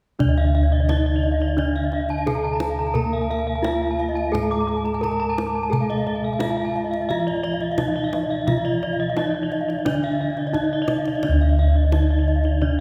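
Bathed in a long, wet church reverb, this brilliant, ceremonial excerpt of Balinese gamelan in D pelog moves at 87 BPM in a straight 4/4. A wooden-mallet bronze metallophone carries the boxy, ringing melody over a mellow, padded metallophone accompaniment sitting softly in the background. Two horn-mallet metallophones play arpeggios, one vintage and band-limited, the other bright. All four metallophones shimmer with the beating of paired tuning. Dark, round bossed gongs hold the bass, and a tight, close kendang struck with hard hands plays from 0.2 seconds to the cut at 12.8 seconds.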